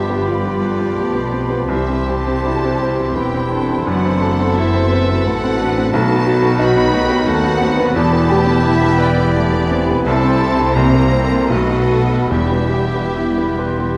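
A clear, polished baby grand piano leads this tragic, brooding excerpt of a romantic movement for piano and orchestra, sitting up front and carrying the melody in triple metre with a rubato feel. Above it, a lush, distant violin section shares the melody with vibrato. A bright oboe in the background, a soft-attacked clarinet, an airy flute section and a smooth second violin section weave quiet second lines. A focused viola section plays accompaniment while French horns and a roomy trombone section hold soft sustained chords. Cellos and an expressive double bass section anchor the low end, and round, soft-mallet timpani enter only from 12.3 to 13.5 s as the harmony settles. The whole is framed by a dark production and a moderate scoring-stage reverb.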